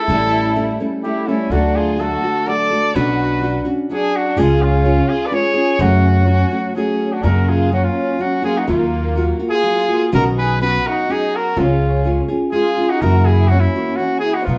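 A clear, vibrato-laden trumpet carries the melody up front in this festive, romantic mariachi excerpt at 125 BPM in 3/4, set against a lush, sul tasto violin section playing a second line and a bright, fingerpicked nylon-string guitar with audible finger squeak. A growly pizzicato upright bass anchors the low end from 0.1 seconds, and the whole ensemble sounds from further back in a roomy studio with dulled highs. The harmony moves from F# harmonic minor into F# major at 7.2 seconds, closing on an F#7 chord.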